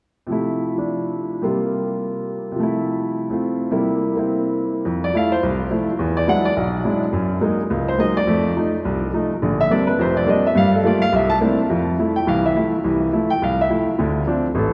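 A solo baby grand piano opens at 0.3 seconds on an Fmaj7/C chord, setting a sophisticated, playful jazz mood in F major at a brisk 210 BPM in 4/4 with a light swing on the eighth notes. The piano has a natural, up-front tone and covers a broad span from F1 up to A5, with the tuning sitting slightly low at A4 = 436 Hz. The opening passage moves between Fmaj7/C and C7 colors before a new section begins at 4.8 seconds, where the harmony grows more adventurous, sliding through E9, Gb69 and F7 to Bb69, then a Gm9 to C13 turn that settles back onto Fmaj7. A lush church reverb with a long 3.5-second tail surrounds the piano, giving it the airy bloom of a large hall. Cut from a longer piece, the passage closes on a Dm7 at 14.0 seconds, and the piano stops at 14.7 seconds.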